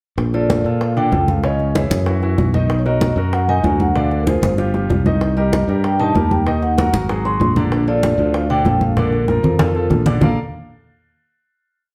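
This is a complete Afro-Cuban jazz piece in Bb major, sophisticated and danceable, moving at a brisk 191 BPM in a straight 4/4. A growly, punchy electric bass sits up front with a direct, bright tone, playing a tumbao line that anticipates the chords. Close, dry congas ring out with slaps and open strokes, while tight, high-tuned bongos keep steady eighths with a hand bell further in the background. A baby grand piano plays a clear, intimate montuno in octaves, with audible action noise adding a natural touch. Over this, a vibraphone struck with soft mallets carries a mellow, metallic, motif-based melody built in sentence phrases, shimmering with fast motor vibrato. Drum fills arrive at 4.3 and 9.0 seconds. The harmony travels from Bbmaj7 through chords such as Dm7b5 and Ebm before returning home, and the piece closes on a final chord at 10.2 seconds, all set in a wet studio reverb that places the band further back in the room.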